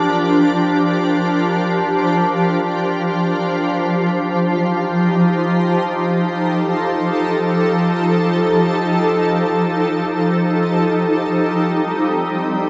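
In free time, this melancholic, spacious ambient piece drifts along as a short passage cut from a longer work, tuned slightly low to A4 = 439 Hz. A single shimmering pad carries the whole recording alone from 0.0 to 12.7 seconds, ranging from F3 to Bb4 and sitting bright and up front. Its detuned unison sine tones, octave-up shimmer and granular texture give it an ethereal quality, shaped by a slow attack, sustained body and long release, with chorus, built-in reverb and tape echo on the pad. The harmony moves from Gm7 to F9 at 3.4 seconds and settles on Cm7 at 11.2 seconds. A wet cathedral reverb with a 5.7-second decay surrounds the pad, and the production leans dark and warm.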